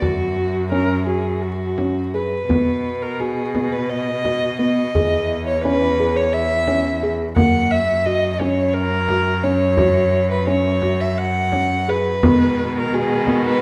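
A straight 7/8 pulse at 172 BPM in eighths drives this playful, shimmering contemporary chamber piece in F# mixolydian: an up-front, woody violin with a dark tone and vibrato carries the melody over soft, felt-muted upright piano arpeggios with audible action noise, a clear, focused bowed cello bass line and a deep frame drum played with soft hands, until a bright, biting studio string section adds sustained chords from 12.2 seconds, heard in a moderate recital hall reverb.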